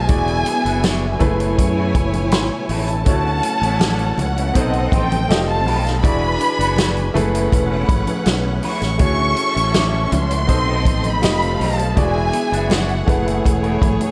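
A lush, lightly reverberant sound frames this cinematic, smooth slice of 1970s-style soul, where a symphonic violin section carries the melody high and expressive with tape echo, over a distant studio string section adding a bowed second line with vibrato and portamento. A deep-bassed vintage grand piano and a very quiet, lightly overdriven tonewheel organ with key click and slow rotary hold the harmony through rich chords like F#m11, Dmaj9#11 and B7b9. An up-front fingered electric bass, a tight-kicked vintage drum kit, ringing congas and a brilliant, twangy wah guitar riff through spring reverb in the background keep the straight groove moving.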